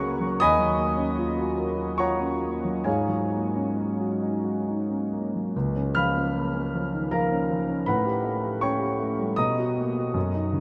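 A concert grand piano, warm and up front with a deep bass, carries this short passage of impressionist classical music alone, spanning Db2 to Gb6. The mood is luminous and serene, moving in a flexible rubato 3/4 at roughly 64-81 BPM in Db mixolydian. Harmonies drift through Ebm9 and Ab9sus4 before settling on Db69 at 5.5 seconds, then colour shifts toward A9 and Cbmaj7. A huge, wet reverb with an 8.2-second decay places the piano in a vast, echoing space, so each chord lingers. Cut from a longer piece, the passage ends at 10.6 seconds.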